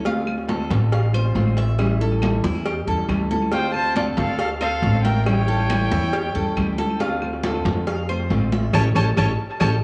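A dark, bowed violin carries the melody from 3.5 seconds, played sul tasto with light vibrato and a soft attack, sounding intimate and close with a smooth top and a touch of tape echo. Alongside it, a brilliant, punchy trumpet adds a close-miked second line in a pop style. This excerpt of Cuban son and guajira in D minor moves at a danceable 138 BPM in a straight 4/4, cycling between Dm7 and A7. Underneath, a woody pizzicato upright bass sits up front, a fingerpicked nylon-string guitar supplies warm classical accompaniment with audible finger squeak, and a picked Cuban tres spins metallic, double-strung arpeggios. Bright, thin-skinned congas and vintage claves sit in the background, while a tight, high-tuned cowbell rings from a distant large room, with tape echo on both cowbell and claves. The band lands an accent at 8.7 seconds, and the echo-heavy cassette sound, small-room ambience and faint mains hum give the whole track a homely, vintage glow.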